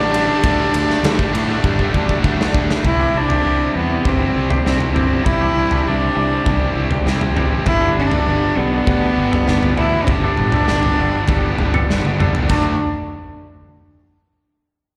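Heard through a venue's PA with recital-hall reverb, this restless, cathartic quiet-loud alternative rock excerpt sets a nasal, reedy cello melody with slapback echo up front over a punchy big-room drum kit with bright cymbals, a round fuzz bass, and two distorted guitar riffs; a biting overdriven guitar riff and a lush, barely audible string section both stop at 2.8 s, after which a twangy, phased guitar plays clean arpeggios from 3.0 s.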